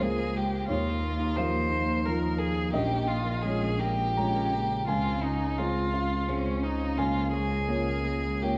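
Moving in an unhurried 3/4 at 86 BPM with uneven, rubato beats, this short neoclassical cue for piano and strings, cut from a longer piece, feels longing and reflective in Bb dorian. A single bowed violin carries the melody up front, its tone focused yet distant and shaded with vibrato, while a solo cello sings a smooth second line in the background beneath it. A felt-muted upright piano provides the accompaniment with a mellow, intimate, vintage character, its thick felt and audible action noise giving it a dark softness. A bowed double bass anchors the low end up close and even, a ringing, fingerpicked concert harp adds very quiet arpeggios, and a glassy FM pad with slow attack and ensemble chorus holds ethereal sustained chords far beneath. The chords drift from Bbm7 over Db through Ebsus2 and Dbmaj7 before settling back, all within a wet recital hall reverb that lends the 8.6 seconds a spacious, church-like glow.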